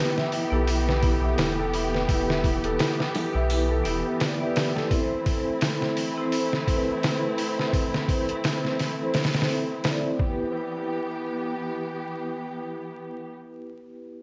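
A light reverb and small-room ambience frame this excerpt, with vinyl crackle running underneath. It is a smoky, cinematic trip hop piece in E minor at 85 BPM, its 16ths swung gently over a 4/4 pulse, moving from E minor to A minor over E and back. A gritty, pitched-down sampler-style kit sits up front with a thumpy kick, a medium-tuned snare and hi-hat, compressed and bathed in studio reverb, and it carries on until 10.4 seconds. A round, deep analog bass with a sine-like, fast-attack tone holds the low end only from 0.5 to 4.0 seconds. A bright, ringing vibraphone struck with hard mallets plays accompaniment throughout, its slow motor vibrato colored by harmonic tremolo, tape echo and a filter sweep. Beneath it, a veiled, con sordino string section sustains bowed chords, while a soft, felt-muted upright piano with audible action noise plays arpeggios through tape echo in the background until 4.9 seconds.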